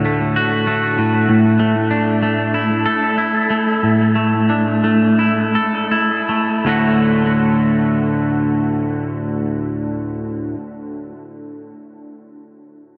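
Cinematic and euphoric, this short rock excerpt in D major sets a lone twangy electric guitar picking clean, compressed arpeggios up front in a dreamy mix soaked in a huge ambient reverb. The guitar carries a subtle chorus and analog delay, ranging from D2 to A4 at roughly 78-97 BPM in a straight 4/4, and the tempo slows between 1.3 and 6.7 seconds. The harmony moves from D to Asus4 and returns to D at 6.7 seconds, where a new section begins before the guitar stops at 10.6 seconds.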